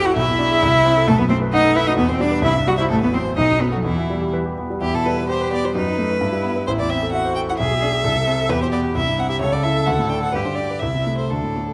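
Violin, cello and concert grand piano enter together at 0.0 s in this spirited, graceful fragment of a quick classical-period piano trio movement in E minor at 130 BPM in 2/4 with a rubato feel: the up-front, rich violin sings the melody with vibrato, the focused, smooth-topped bowed cello carries a second line, and the clear piano, also up front, gives deep-bass accompaniment with short sustain, all captured by close, detailed microphones in a moderate concert hall reverb as the opening section repeats from 4.8 s.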